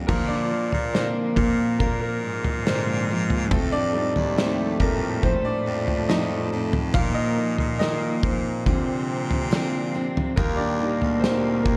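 A dark, warm production sits in a moderate scoring-stage reverb, giving this brief cut from a longer pop ballad a tender, emotional glow at a slow 70 BPM in straight 4/4. A clear baby grand piano with natural, long sustain carries a solo across the whole passage while also supplying the accompaniment. Beneath it, a full-bodied dreadnought steel-string guitar picks arpeggios from the background, and an edgy, forceful baritone saxophone, close-miked with vibrato, takes the bass line. A distant, biting cello section, earthy and nasal, bows a second line from 0.1 seconds. A loose indie drum kit, up front, arrives at the same moment with a punchy kick, medium-tuned snare, toms and dark crash cymbals in a pumping room, as the harmony moves from Bb through F7, Bbsus4 and Bbadd9 to Eb.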